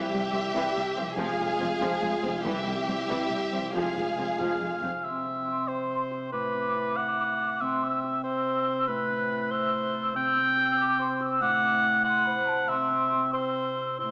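A mellow cor anglais, played solo and up front with light vibrato and a soft attack, carries a second line from 4.4 s to the end of this heroic, soaring film-score passage in 6/8, cut from a longer piece. Before it enters, a lush bowed violin section with expressive vibrato holds the melody and a close second line. A smooth viola section, a woody cello section and a chamber double bass section sit in the background beneath them, while a dark, tight French horn section sustains chords, and all of these fall away just before 5 s. Very quiet timpani with medium mallets sound briefly within that opening build-up, over harmony moving between C and F minor. A ringing, thumb-plucked concert harp plays arpeggios throughout, and from 5.0 s an airy, hollow flute ensemble and a clarinet in classical style join the cor anglais as the harmony shifts between C and A minor. A wet concert-hall reverb surrounds the sound, which comes across as if heard through a small speaker.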